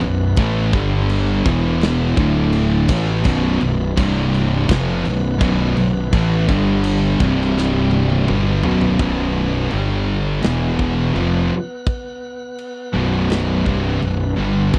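A growly, overdriven fuzz bass sits up front in this hypnotic, ominous stoner and doom metal excerpt, anchoring a riff played by two thick fuzz guitars and a bright, double-tracked high-gain guitar that hang back in the mix. A big acoustic rock kit with a tight kick, a medium-tuned snare and a rolled-off top plays a fill from 7.6 to 9.0 seconds before the riff moves into a new section, while a piping, scooped tonewheel organ holds sustained chords through a slow rotary speaker with light overdrive. The sound is dry and close, in a 1970s studio style.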